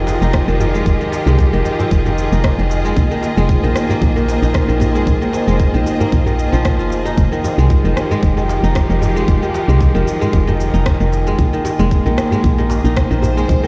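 Rich, vibrato-laden bowed strings with 12-bit sampler grit and sidechain pumping open this mystical organic downtempo excerpt in F minor at 114 BPM, alongside up-front fingerpicked kora arpeggios ringing through tape echo and a round, woody FM bass, before an overdriven electronic shaker and rim click, a cracking djembe in the background, and a tight, tape-warm electronic kick join by 0.3 seconds, all played back on a big sound system in a bare stone room over alternating Fm7 and Bb7sus4 chords.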